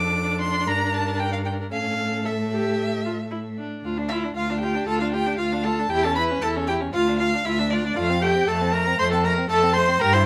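Moderate studio reverb lends a gentle sense of space to this short cut from a quick, urgent and dramatic classical-period string quartet movement in D minor at 116 BPM. The first violin carries the melody high and up front yet slightly distant, expressive with vibrato and portamento, while the second violin shapes an equally expressive inner line beneath it. The viola supplies a smooth, even accompaniment with light vibrato, and a close, rich cello anchors the bass up front as the harmony moves through G minor and A before returning to D minor and landing on F.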